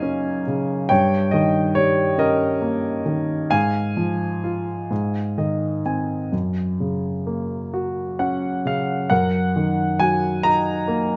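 Close, detailed microphones place a grand piano up front in a moderate recital hall, its long sustain blooming into a 1.5-second reverb while the instrument's action noise stays audible. This calm, tender classical fragment, cut from a longer piece, is for solo piano in a slow, rubato 6/8 at roughly 42-47 dotted-quarter beats per minute, tuned to A4 = 438 Hz. The intimate, natural tone carries chords moving from Gb6 through Fm/Ab to Ebm/Gb, with a brief piano fill between 4.9 and 6.3 seconds.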